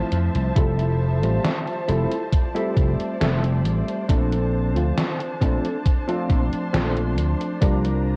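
A punchy, up-front vintage slap bass and a thumpy electronic kick drum drive this dreamy, woozy vaporwave fragment in a straight 4/4, with a gated 80s digital drum machine adding hi-hat and a gated-reverb snare, both drum parts re-recorded in a large room. A worn, slightly out-of-tune tine electric piano, lightly overdriven with subtle chorus and tape echo, plays accompaniment over a veiled, con sordino string section holding bowed chords with vibrato. A dark, clean mellow electric guitar enters at 0.6 seconds with a compressed riff through analog chorus and tape echo as the chords move from a rootless Dm7 to Fmaj7, Bbmaj9 and C9sus4, all under light reverb and a warbling cassette-tape pitch drift.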